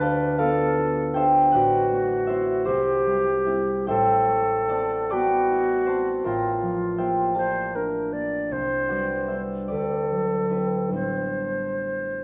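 Moving in 6/8 at roughly 46-54 BPM counted in dotted quarters, this short classical excerpt unfolds with a free, rubato feel in A dorian, tuned to A4 = 443 Hz. It is an impressionist duo for concert flute and concert harp, wistful and mysterious in mood, with both instruments sounding throughout its 12.2 seconds. The flute carries the melody between F4 and D5 with a pure, straight, tongued tone, placed up front. The harp supplies the accompaniment across a broad span from A1 to D6, thumb-plucked and ringing, also close and present. Harmonies drift through colored chords such as Dm6, Am9, Bbmaj7/A and C69 before arriving on D9 at 9.7 seconds, all held in a moderate recital hall reverb with a dark, warm production.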